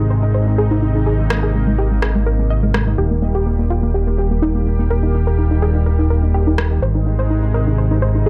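Lightly reverberant and euphoric, this short cut from a longer progressive house piece in Eb major at 125 BPM sets a lush, detuned unison pad holding chords from Ab to Eb and back under a tight, driving arpeggiated synth with chorus, phaser, dub echo, 12-bit sampler grit and a filter sweep running its full length, while a fat, up-front analog bass anchors the low end and an overdriven electronic rim click appears from 1.3 to 2.8 seconds and again briefly at 6.6 seconds.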